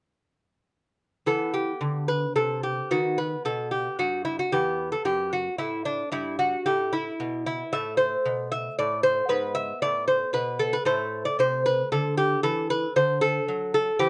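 Classical baroque-style dance for solo lute in E minor and 12/8 at 76 BPM with a rubato feel, tuned slightly low at A4 = 436 Hz, this introspective, flowing excerpt cut from a longer piece features a delicate, fingerpicked gut-strung lute with double and some octave-doubled courses, placed up front in light reverb and spanning E2 to E5 from 1.3 to 14.1 seconds, as its chords move from Em through B and back to Em, then to Am and G#dim before settling on Am.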